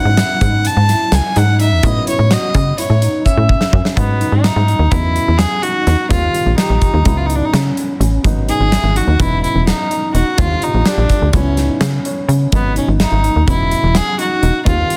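A nasal, reedy violin with a gut-string, period-style tone carries the melody up front in this brooding, intricate progressive instrumental, cut from a longer piece and set in 9/8 at 252 BPM in G# phrygian, driven by a tight sawtooth sequencer bass with ring modulation and a big-room acoustic rock kit with a medium-tuned snare. In the background a natural-sounding baby grand piano comps while a bell-like tine electric piano with ensemble chorus plays arpeggios; a very quiet, grainy shaker sits under the opening, and a breathy, distant alto saxophone slips in briefly at 3.3 seconds alongside a drum fill, with a piano fill arriving at 11.8 seconds. The mix is dense and heavily limited, bathed in studio reverb.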